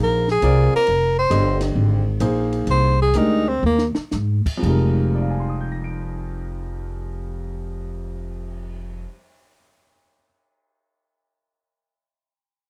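A swung 4/4 pulse carries this short, cool and spiritual stretch of modal jazz, with the time slowing down from 0.9 to 4.6 seconds. A breathy tenor saxophone takes the melody as a solo, up front and close-miked, with a soft attack and scooped notes before it stops at 3.9 seconds. Beneath it, the upright bass is plucked, woody and growly, its steel strings giving a thumpy, forward tone. A clear grand piano supplies the accompaniment, moving from Fm7 to Abadd9/F and ringing on to 10.3 seconds, after the other parts have stopped. The compact cocktail drum kit sits further back, with dark cymbals, a high-tuned snare and a tight kick, and it plays a fill from 3.6 to 4.1 seconds. The recording is dry and close, in a 1970s studio style with little reverb.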